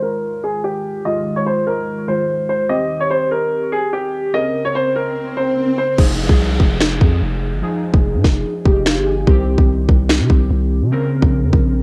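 A clear, open concert grand piano carries the melody from 0.0 seconds over warbling, detuned lo-fi synth keys with chorus, phaser and a filter sweep, both softened by a low-pass filter and cassette-tape colour, setting a menacing, ominous F minor drill mood at 146 BPM in a half-time feel. An electronic swell and downlifter rise in at 4.8 seconds before the piano drops out at 5.9 seconds. At 6.0 seconds, a deep, mellow sine 808 bass and an up-front drill kit with a hard-clipped kick, sharp snare, crash and finger snaps join the synth keys through the Fm7, Cm and Bbmadd9 cycle, with hi-hats muted, in a short cut from a longer piece with a light-reverb, home-cassette feel.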